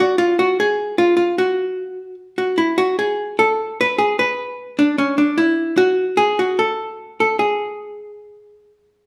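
A dark, clean, picked hollow-body archtop guitar, miked and amplified and sitting up front, plays alone between C#4 and B4 across this brief nostalgic, whirling musette at 149 BPM in a straight 3/4 tuned to A4 = 441 Hz, cut from a longer piece and recorded live in one room with a moderate large-studio reverb of 1.1 seconds.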